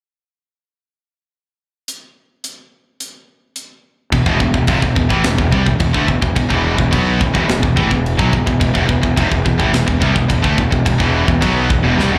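Heavy metal at 107 BPM in E major, heavy and aggressive, heard as a live club gig through the venue's PA, where an up-front, tight drum kit with crash, hi-hat, tight kick and medium-tuned snare opens alone at 1.9 seconds before a growly, fuzz-overdriven fingered bass, two bright picked distorted guitars with slapback echo, a very quiet double-tracked sludgy guitar and a mellow French horn section holding soft-attack sustained chords with light vibrato all enter on an E chord at 4.1 seconds, closing on a drum fill at 12.0 seconds in this cut from a longer piece.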